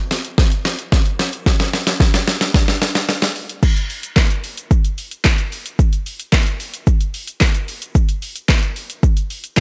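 A drum fill opens this carefree, euphoric pop excerpt at 0.1 seconds, building up on a layered, electronic deep house kit with handclaps, shaker, hi-hat and crash cymbal over a deep kick and snare. At 3.6 seconds the beat drops into a straight 4/4 groove at 111 BPM, its dark hats and deep low end sitting up front in a dry sound.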